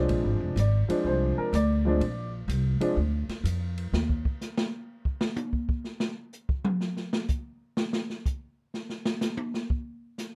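A relaxed 4/4 swing at 125 BPM opens this playful jazz piano trio fragment in Bb mixolydian, with the up-front baby grand piano carrying a warm melody over a Bb7 chord, touched by plate reverb. The woody pizzicato upright bass holds the low end, and the acoustic drum kit, with its dark cymbals, medium-tuned snare and boomy kick, sits in a small, natural-sounding room. The piano drops out at 3.0 seconds, the drums take a solo from 3.9 seconds, and the bass stops at 4.2 seconds, all within a dark, lightly reverberant production.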